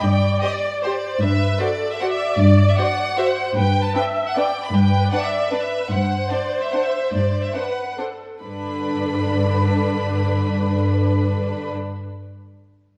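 Classical string music in 3/4 with a festive, elegant mood and a rubato feel, cut from a longer piece, set on a moderately reverberant scoring stage. A clear, distant violin section carries the smooth, even melody with vibrato, while a lush viola section adds expressive portamento in the accompaniment. A second violin section enters at 0.4 seconds with a soft-attack second line, and an up-front cello section holds a low G as the bass. The music slows from 5.3 to 8.4 seconds before a new section begins.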